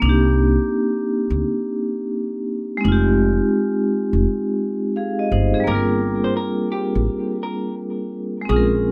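A rough home-demo mix with light reverb frames this short, nostalgic and melancholic lo-fi hip hop cut from a longer piece, moving at 85 BPM in 4/4 with a swung 16th feel in G minor over Cm7, Fm7 and Gm7. Up front, a hard-mallet vibraphone rings dark and metallic with a slow motor vibrato, its tone dulled by cassette-tape grit and a low-pass filter, while a woody, pizzicato upright bass on steel strings holds the low end. At 5.7 s a clean, picked hollow-body electric jazz guitar enters quietly with a filtered melody.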